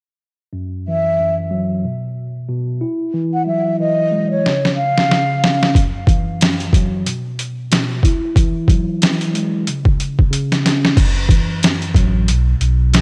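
A swung, head-nodding boom-bap groove in 4/4 drives this gritty, tough hip-hop excerpt, built on a sampler-style kit that enters at 4.5 seconds with a thumpy kick, medium-tuned snare, hi-hat and crash, all pitched down, compressed and overdriven with cassette grit, plus drum fills along the way. Before it, a mellow, clean tine electric piano lays down sus and add9 chords with a hint of tape character, while a breathy, hollow concert flute floats a short, close-miked melody with tape echo that ends by 5.7 seconds. At 11.0 seconds the harmony shifts to a minor seventh chord and a deep, full sub bass with an octave arrives, its sine tone given a touch of tube saturation, all set in a light reverb with the lo-fi feel of a home cassette recording.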